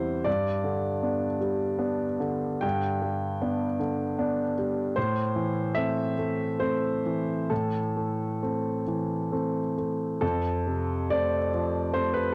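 A home recording made on cassette carries this short fragment, with the tape's character coloring the piano and a moderate small-room reverb keeping it close and private. It is a neoclassical minimalist piece, reflective and wistful, for solo concert grand piano that plays from 0.0 to 12.3 seconds. The instrument sits up front with a warm, intimate tone, deep bass and long sustain, and the mechanical noise of its action stays audible beneath the notes. The playing moves in a gentle three-beat metre with a rubato feel, spanning E2 to G5. The harmony passes from G to A minor at 5.0 seconds and settles on F at 10.2 seconds, where the opening material begins again before the fragment breaks off.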